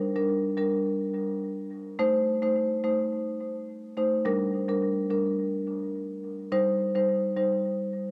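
Tough and sultry, this short dancehall cut from a longer piece moves at 106 BPM in a straight 4/4, set in G minor and tuned slightly sharp of standard pitch. A lone marimba played with medium mallets carries the whole fragment from 0.2 to 7.6 seconds, its mid-forward, up-front tone colored by cassette tape and analog delay as it moves through Gm, Adim and back to Gm before settling on Cm. The home cassette recording sits in a lush hall reverb with a long 2.9-second tail, lending the lone instrument a hazy, enveloping space.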